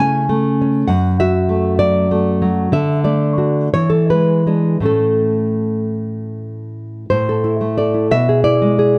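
In a 6/8 pulse taken with free rubato at roughly 52-68 BPM in dotted quarters, this brief, nostalgic romantic passage cut from a longer piece features a solo nylon-string guitar, warm, thumb-plucked and up front under close, detailed microphones with light reverb, moving from A major through D and E7 harmonies before a turn to A minor at 7.1 seconds that closes on an E7 chord over B at 8.1 seconds.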